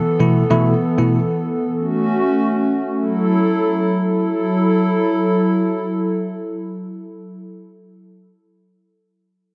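Free-time, this sultry, hypnotic afrobeats fragment in F# minor rests on a hollow, flute-like pad with chorus that sustains Esus4, A6 and F#m7 chords from 0.0 to 7.4 seconds, while a bell-like tine electric piano adds a bright, clean accompaniment up front only from 0.2 to 1.2 seconds, all under light reverb and a dense, heavily limited modern master.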